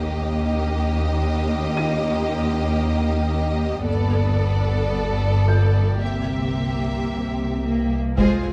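A metallic, warbling drone with chorus and its own reverb hums beneath lush, vibrato-rich violin sections carrying the melody and a second line, a distant viola section, and a cello and double bass section in the background in this eerie, mysterious suspense film cue cut from a longer piece, while a soft, felt-muted upright piano adds a mellow, intimate texture high above from 1.8 seconds and close, dry taiko drums struck with hard sticks land a sudden accent at 8.2 seconds, all set in a moderate scoring stage reverb with detailed, close miking.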